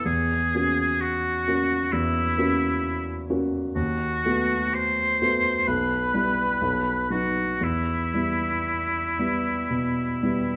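From the opening moment, a clear oboe and a grand piano sound together in a short, elegiac fragment of a romantic classical duo, cut from a longer piece. The oboe carries a solemn solo melody in a classical style, its punchy tone colored by a light vibrato and a roomy sense of space. Beneath it, the piano supplies an intimate, natural accompaniment that reaches down into the deep bass, with the noise of its action audible close up. The pulse moves in a slow four with a flexible rubato, and the harmony passes from F#7/E through B7/D# to Em/B, resolving on B and then Em near 7.6 seconds. A moderate recital hall reverb and a dark production give the roughly ten-second passage a grave, mournful glow.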